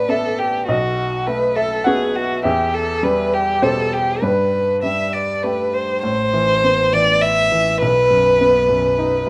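A single bowed violin carries the melody in this short neoclassical passage for piano and strings, its rich tone shaped by vibrato and portamento into an expressive line full of longing. Beneath it, a clear, present grand piano supplies the accompaniment in A minor, moving in a rubato 3/4 around 102 BPM, and a focused bowed double bass slips into the background at 6.0 seconds. The reflective mood sits in a small room with light reverb, and the mix has the rough feel of a home demo cut from a longer piece.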